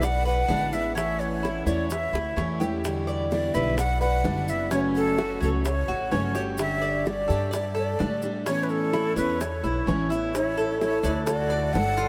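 A breathy, vibrato-laden flute carries the melody up front over a picked steel-string acoustic guitar, a metallic double-strung tres spinning arpeggios, a woody pizzicato upright bass and very quiet high-tuned bongos with grainy maracas, in a warm, danceable Cuban son and guajira groove at 128 BPM. The harmony moves from E7 through Em7, F#m and Gsus2 to Aadd9, with a drum fill at 2.1 seconds. At 10.3 seconds the guitar stops and a second, brighter flute with audible chiff joins on a lower line, all set back in a huge ambient reverb in this excerpt from a longer piece.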